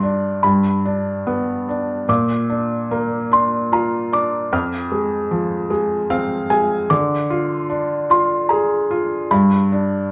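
This wistful, dreamy lullaby in the children's music vein opens with a music box and a felt-muted upright piano sounding together, in a gently rubato 3/4 at about 74 BPM. The music box carries the melody high in its register, delicate and tinkling, with a bright, plucked tone that feels close-miked and dry, like a small box held near the ear. Beneath it, the upright piano supplies soft, mellow accompaniment from its low bass upward, its thin felt and audible action noise giving it an intimate, up-front presence. At 5.7 seconds the piano takes a short fill. The harmony drifts from G through Bb and F minor to D diminished before settling back on G, all heard in a moderate studio reverb from musicians playing live in one room. The passage is cut from a longer piece.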